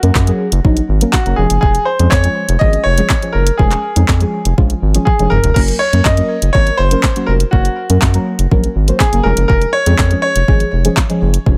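A dry, up-front mix carries this carefree, euphoric dance-pop fragment, where a clear, polished concert grand piano with digital delay sings the melody over deep, mellow chord stabs colored by chorus and phaser, a round analog bass and a tape-toned electronic R&B kit with soft kick, sharp snare and handclaps, the stabs and bass both pumping to the sidechain, the harmony moving from Gb to Db/F, and a drum fill arriving at 5.1 seconds.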